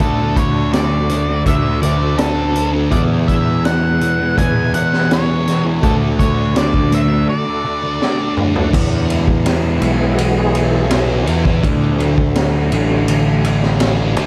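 A hazy, kaleidoscopic slice of psychedelic rock opens with a dark octave-fuzz lead guitar melody drenched in analog delay, over a double-tracked, phaser-swirled fuzz guitar riff, a growly overdriven bass up front, a gritty small-room garage drum kit with a boomy kick and high-tuned snare, and a reedy tonewheel organ holding chords through a slow rotary speaker in the background, before a break at 7.3 seconds leads into a drum fill at 8.0 seconds, the lead drops out at 8.3 seconds, and the organ exits the echo-heavy mix at 13.0 seconds.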